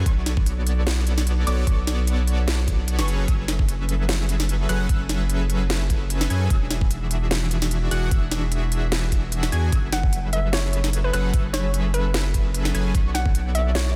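Future bass at 149 BPM in F# minor, lush and dreamy with a half-time, lightly swung feel, built on Bm9, F#m11 and E7 chords, with a fat, detuned sawtooth polysynth riff carrying chorus and digital delay over a deep, saturated sine sub bass, all pumping against the sidechain. A knocking, tape-warm electronic kick sits up front beside a trap kit of sharp snare and crisp hats, while a punchy unison pluck plays high arpeggios in the background. At 9.9 seconds a hollow, bouncy square-wave pluck enters with a mellow melody dressed in chorus, cassette tape colour and dub echo, all within a dense, heavily limited modern master.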